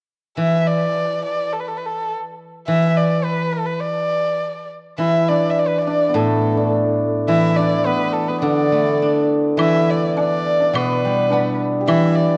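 A dark, intimate erhu carries the melody up front, bowed with vibrato, soft attack and portamento, in this festive, pastoral piece of Chinese traditional chamber music in D zhi mode, in 2/4 at 105 BPM with a rubato feel. Beneath it, a silvery steel-string zither played with fingerpicks rings out as accompaniment, joined at 5.0 s by a shimmering hammered dulcimer on a second line, while a very quiet, close and dry woodblock appears at 9.6 s. A moderate concert hall reverb and a warm production frame the ensemble.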